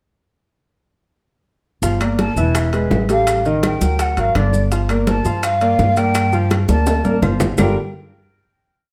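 Sultry and driving, this short Afro-Cuban jazz piece in G minor at 167 BPM sets a breathy, hollow flute with plate reverb playing motif-based call phrases over an intimate, up-front grand piano montuno in octaves and a thumpy pizzicato upright bass tumbao that anticipates the chords, while ringing metal-shell timbales, thick-skinned congas with slaps and open strokes, grainy maracas, and tight high-tuned bongos and woody claves tucked in the background drive the rhythm, a drum fill arriving at 6.7 s before the final chord at 7.6 s.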